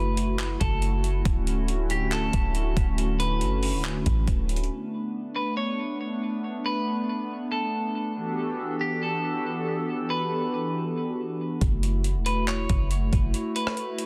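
A hollow, flute-like pad with chorus and sidechain pumping holds dark, sustained chords up front through this hazy, melancholic cloud-rap excerpt, while a bright, twangy clean electric guitar carries the melody through delay. A deep, round 808-style bass and a gritty, tape-warm breakbeat kit of thumpy kick, handclaps, hi-hat and rim click, with soft clipping on the snare, drive a half-time feel, falling away at 4.7 seconds and returning at 11.6 seconds. The harmony moves from F#m7 and Dmaj7 through Bm7 and Em11 back to F#m7, set in dense digital ambience with a heavily limited modern master.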